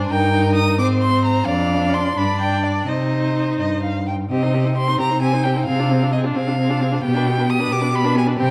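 Rubato lilts across a 6/8 pulse at 88 dotted-quarter beats per minute in this quick, stormy classical-period movement for string quartet in C minor, cut from a longer piece. The lead violin enters at 0.1 seconds high in its range, singing up front with a rich, expressive tone, full vibrato and sliding portamento. Beneath it, the second violin holds a smooth, even line in the middle register. The viola's focused accompaniment sits distant in the blend, while the cello anchors the bass up front with a warm, smooth-topped sound. Harmonies pass from Eb/G through Ab, Dm7/F and G5 to C minor, then a new passage from 4.3 seconds leans on Dm7b5/C and G/B, keeping the urgency taut. A dark production and a reverberant recital hall give the quartet a resonant, enveloping space.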